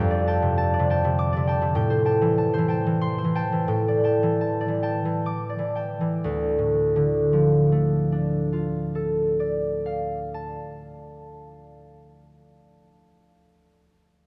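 In a rubato 3/4 that drifts between 59 and 106 BPM, this classical solo harp excerpt eases into a marked slowing from about 0.9 to 6.2 seconds. The mood is mysterious and wistful, set in D minor. A single concert harp carries everything, fingerpicked and ringing, sitting up front and spanning D2 to D6. The harmony moves from F69 through Am7 and A7sus4 before settling on Dm at 6.2 seconds, where a new section begins. A cathedral reverb with a long 5.6-second decay surrounds the acoustic harp, and the dark, warm production gives the short fragment a cavernous glow.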